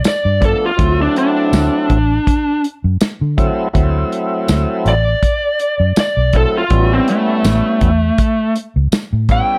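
A dark, overdriven lead guitar, picked through a small cranked amp and sitting up front, leads this swaggering, soulful straight-eighth soul blues at 81 BPM in 4/4. It plays a solo across the whole 9.6-second cut, with a light sixteenth-note swing and a melody spanning A3 to G5 in D mixolydian. Beneath it, a vintage fingered electric bass with a foam-muted, round and punchy tone holds down the low end. A dry acoustic soul drum kit with a punchy kick, medium-tuned snare, hi-hat and tambourine keeps the groove, its rolled-off top giving it a smooth feel. At 0.4 seconds a thick, lightly overdriven tonewheel organ slips in underneath through a slow rotary speaker, its vibrato adding a full cushion of accompaniment. The harmony moves from G7 to D7 and then to A7 at 6.7 seconds, and a light reverb gives the room a touch of space.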